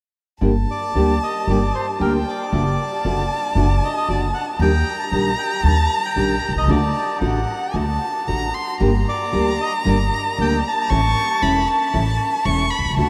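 Drenched in a huge, wet reverb that opens into a vast, echoing space, this tense, sultry tango moves with a rubato feel through a chord path from Gm and Ebmaj7 to D and A. A reedy, boxy bandoneon carries the melody from 0.7 s to 12.2 s, while a close, bowed violin sings a second line with vibrato, portamento and a soft attack. Beneath them, a fingerpicked nylon-string guitar gives a deep classical accompaniment with audible finger squeak, and a woody, thumpy pizzicato upright bass on gut strings sits dark and up front.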